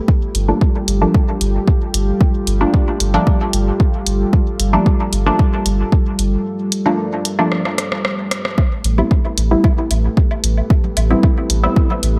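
Bright, 1980s-style digital production with light reverb frames this hypnotic, nocturnal dub techno fragment, cut from a longer piece in a straight 4/4. An overdriven, layered electronic kick sits up front with a deep punch, joined by an analog drum machine whose hi-hat and rim click carry gated reverb and the air of a large room. A soft, round sub bass of triangle and square waves holds low and sustained, pumping with sidechain compression, while a muted sawtooth chord stab with a filter pluck decays through chorus, phaser and dub echo. Beneath them, a dark, detuned analog pad with a sub octave swells in slowly and lingers on long, moody chords, also breathing with sidechain pumping. A break opens at 6.5 seconds with a drum fill leading to 8.6 seconds, where the harmony moves from Gm9 to Am9 and tape-warm woodblock and congas enter in the background, trailing dub echo.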